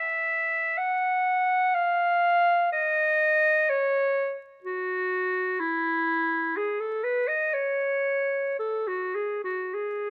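A classical solo for unaccompanied clarinet, this short passage, cut from a longer piece, carries a lonely, mournful mood. The clarinet plays alone and up front for the full 10.1 seconds, moving freely in rubato within a range from E4 to F#5. Its tone is clear with a vintage character, shaped in a traditional classical style. Close, detailed microphones capture the instrument intimately, set in light reverb. A vinyl crackle sits beneath the line, lending the recording an aged patina that deepens its sense of solitude.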